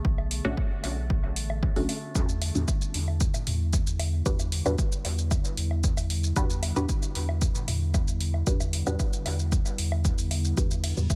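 Hypnotic and deep, this dub techno excerpt in E minor moves at 114 BPM in a straight 4/4, shifting from Bm7 to Em7 at 2.2 seconds, with an up-front, punchy electronic kick and a round sine sub bass that pumps under the sidechain. A punchy analog drum machine supplies hi-hat, ride cymbal and shaker, while tape-warm electronic woodblock and toms sit in the background with dub echo, and a muted, detuned dub chord stab with phaser and echo carries a filter sweep from 2.2 seconds onward. Behind them, a warbly, nostalgic lo-fi pad holds dark sustained chords with chorus and reverb, and a glassy, drifting harmonics texture hovers only until 2.2 seconds, all in a dry mix.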